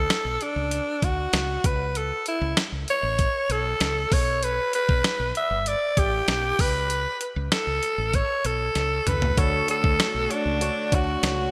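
A breathy, raspy alto saxophone carries an urgent, dramatic melody over a woody, round fretless bass and a thumpy, up-front 12-bit drum machine in this 97 BPM 1980s-style pop cut, moving through Dmaj7, A/C# and G until a drum fill at 8.8 seconds brings in a glassy, bell-like chorused FM electric piano and a very quiet, swirling phased analog pad at 9.4 seconds, all set in a lush hall reverb with bright digital production.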